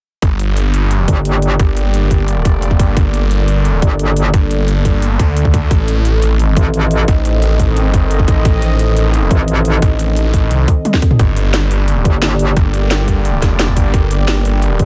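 A straight 4/4 groove at 175 BPM drives this tense, mechanical stretch of dark technical drum and bass in G minor, with an overdriven, tight electronic kick sitting up front beside a layered kit of cracking snare, crisp hi-hats and toms that has a warm, tape-like character and rolls into a short drum fill at 10.9 seconds. Underneath, a snarling, detuned sawtooth bass growls with distortion and tube saturation, while a metallic FM wobble bass with chorus drops in briefly and repeatedly, first at 1.1 seconds. A resonant, evolving pad with chorus and sidechain pumping holds sustained chords moving from Gm to Adim and back, all in a dry, close sound.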